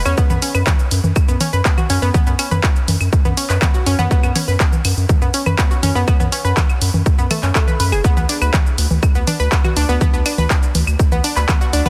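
Dense and heavily limited in a digital ambience, this dramatic, hypnotic melodic techno fragment at 122 BPM in 4/4 sets a bright, detuned, wave-folded analog pluck, its arpeggios swept by a filter and colored with chorus, cassette tape wear, tape echo and sidechain pumping, over a deep, dark, round analog bass that also pumps, while an up-front, overdriven house kit of claves, congas, handclaps, hi-hat and shaker and a punchy overdriven electronic kick, both re-recorded in a large room, drive the groove from F#5 harmony into a chordless stretch at 8.0 seconds, with the kick dropping out at 11.6 seconds.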